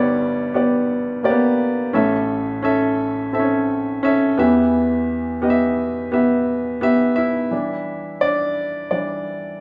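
Hopeful and anthemic, this short pop passage, cut from a longer piece, moves at 86 BPM in a straight 4/4 feel, tuned slightly below standard pitch at A4 = 438 Hz. A baby grand piano carries it alone, its tone clear, polished and placed up front, spanning from G1 up to E5. The harmony steps from G to A and then settles on Em, shifting to Em7 at 7.5 seconds as the passage turns toward a new section. Across that closing stretch the piano is heard as a featured solo until the recording cuts off at 9.6 seconds. A moderate large-studio reverb gives the sound a sense of space, as if the band were playing live together in one room.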